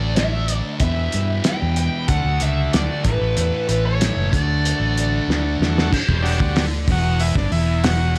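A dark, double-tracked fuzz guitar riff with phaser anchors this hypnotic, trippy psychedelic rock excerpt in E minor at 94 BPM, over an up-front fingered electric bass, a muffled, cloth-damped drum kit with a fat snare that enters at 0.2 s, and buzzy, vibrato-tinged overdriven combo organ chords, while a wah-and-delay lead guitar through a small cranked amp sings its melody until 5.6 s, and after a drum fill a transistor combo organ solo takes over at 5.9 s.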